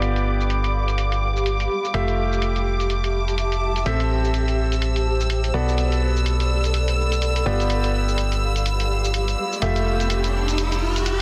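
A swung groove drives this bittersweet, soulful piano house excerpt, with filtered electronic hi-hat and shaker carrying a loose, shuffling sixteenth-note lilt that has an analog, small-room character. Underneath, a punchy, round FM bass sits up front with a fast attack and dark decay, anchoring the low end. A bright baby grand piano plays the central riff, its brilliant tone roughened by vintage 12-bit sampler grit, softened by a low-pass filter and trailed by delay as it moves through G7, Fmaj9, Am7 and Bm7. From 0.1 seconds a cloudy, evolving granular pad drifts in, blurred and mellow with its own reverb. High above, a clear studio violin section holds smooth, bowed chords with light vibrato, and an electronic riser enters at 8.7 seconds. Everything sits in a lush hall reverb within a dense, heavily limited modern master.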